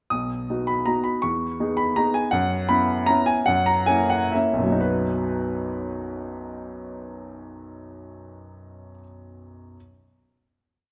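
Set in a moderate recital-hall reverb, a smooth, vintage-toned baby grand piano sits up front in this brief, elegant and graceful classical waltz in 3/4, carrying a single-line melody over a waltz bass with rubato phrasing, slowing down from 1.8 seconds and arriving at its final chord at 4.8 seconds.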